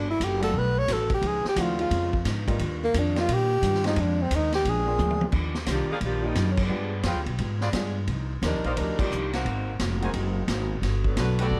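Energetic, brassy big band swing at 175 BPM in Eb major, cut from a longer piece, opens with a breathy, intimate tenor saxophone solo up front over growly pizzicato upright bass, a dark-cymbaled vintage drum kit, a woody picked acoustic guitar and a concert grand piano with audible action noise in the background, then after a drum fill the tenor stops at 5.3 seconds and a tight, distant saxophone section takes the melody while a clear trumpet section adds stabs and band accents hit at 6.5 and 8.9 seconds, all in a dark, dry production.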